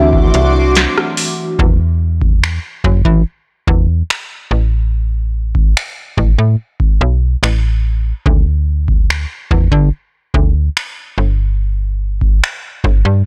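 A booming analog drum machine with a deep kick, crisp soft-clipped snare, metallic hats, finger snaps and rim clicks drives this longing, sensual contemporary R&B excerpt at 72 BPM, joined up front by a snappy, slap-like FM bass that runs nearly the full 13 seconds. For the opening 1.6 seconds, over a D9 chord, a mellow FM electric piano with chorus, phaser and tremolo plays alongside a shimmering, retro pulse-width pad, while a velvety, dark synth lead touches an E5 in the background before dropping out at 0.8 seconds. After that the bass and drums carry on through an Asus2 passage, all in a blown-out, overdriven digital ambience.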